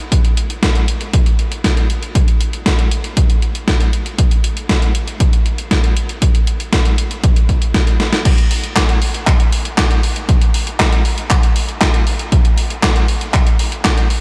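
Italo disco at 118 BPM in a straight 4/4, this bittersweet, danceable excerpt sets a punchy analog kick drum, re-recorded in a large room, alongside a tape-warm, sampler-style 80s digital drum machine whose crash cymbal, handclaps, hi-hat and gated-reverb snare sit up front under light reverb, with a drum fill at 8.0 seconds leading into a new section at 8.3 seconds.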